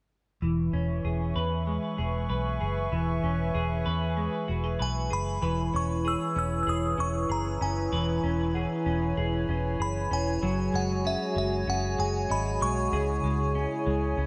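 Ethereal and dreamy, this dream pop excerpt drifts in a straight, unhurried four-beat pulse. From 0.4 seconds a clean, picked semi-hollow electric guitar plays arpeggios through lush chorus and digital delay, while a dark, foam-muted fingered electric bass sits up front with a round, punchy tone. Just after, a hollow, flute-like pad with a slow attack holds airy, detuned sustained chords under its own chorus, moving from E6 through F#sus2 to C#m. At 4.8 seconds a crystalline, warbling FM synth bell takes the melody up front, its bright, fast-attack notes decaying with a long release through chorus and delay. From 5.4 seconds a small celesta adds a very quiet, sweet, bell-like texture of delicate felt-hammered notes. A huge ambient reverb with a long tail gives the whole mix a spacious, floating depth.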